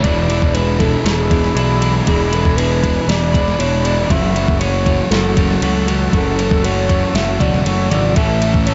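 Shoegaze-leaning dream pop rock at 118 BPM, this dreamy, blissful fragment runs on an up-front, overdriven 8-bit drum machine with a thumpy kick and ride cymbal, a fuzzed, amped bass, and a wall of guitars: a dark fuzz riff in the background, a picked overdriven riff bathed in reverse reverb, and a very quiet, twangy twelve-string arpeggio. Over this a breathy, flute-like synth lead warbles with vibrato, chorus and digital delay, while an evolving, detuned wavetable pad sustains high chords in the background. The harmony moves from E7 to F#m7 at 4.1 seconds and reaches Amaj7 at 8.2 seconds, all within a lightly reverberant, softly rounded mix.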